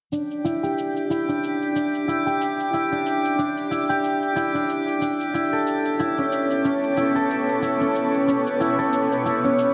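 A lightly swung sixteenth-note groove in 4/4 sets an earthy, hypnotic organic downtempo mood, with a tape-warm electronic shaker ticking quietly under a mellow, thumb-plucked concert harp whose ringing arpeggios sit up front, shaped by a filter sweep and a diffuse ambient delay. A calm, glassy texture of drifting overtones hovers above throughout, the harmony moving from Em7 to Aadd9 at 5.3 seconds. At 6.1 seconds a bright, blurred granular cloud pad swells in with sustained, evolving chords, deepening a dreamy mix soaked in lush hall reverb in this fragment of a longer piece.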